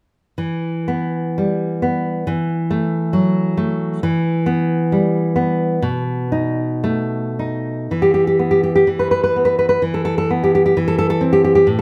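Close, detailed microphones and a light reverb put a solo nylon-string guitar up front, its acoustic tone warm and deeply classical. The piece is romantic and wistful, an intimate fragment cut from a longer work in E minor, with the guitar tuned slightly high to A4 = 443 Hz. In 2/4 at a slow 54 to 70 BPM, the fingerpicked playing moves with a free, rubato feel, ranging from A2 up to B4. The opening passage settles on E minor, shifts to a suspended E chord, returns to E minor and then moves to B7. A second passage arrives at 7.9 seconds with an open E fifth and, near the close, an A minor seventh over E, before the fragment breaks off at 11.8 seconds.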